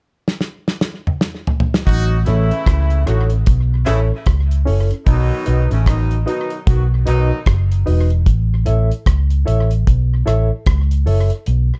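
Sunny and laid-back, this roots reggae excerpt moves at 75 BPM in A lydian with a swung sixteenth feel, opening on a drum fill from a damped, dry 70s kit with a tight kick and medium-tuned snare before a round, foam-muted electric bass enters up front at 1.9 seconds. A clear, tight horn section with light vibrato and octave doubling plays a second line through tape echo until 7.4 seconds, while a reedy electric piano adds lightly overdriven stabs with fast tremolo through its built-in speakers. The chords move between A and B under a dark production with light reverb, and the kick drops out just before the cut at the end.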